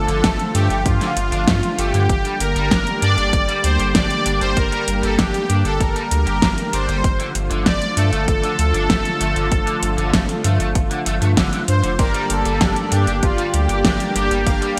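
A soft supersaw carries the melody up front, its smooth, detuned unison sawtooth tone treated with phaser and digital delay in this cinematic, nostalgic synthwave piece in G minor at 97 BPM in a straight 4/4. Beneath it, a warm analog pad holds slow-attack sustained chords with chorus and sidechain pumping, while a round, deep analog bass with a dark filter-swept tone pumps in the low register. An overdriven semi-hollow guitar plays a picked riff through ensemble chorus and delay, and a pop drum kit with a fat snare and metallic hats sits prominently beside a punchy electronic kick, both overdriven, with gated reverb on the kit. At 12.0 s a glossy, bright chorused polysynth arrives with pulse-width-modulated stabs as the harmony returns to Gm, having moved between Dm/G and Gm throughout. A lush hall reverb and a bright 1980s-style digital production give the whole passage its sheen.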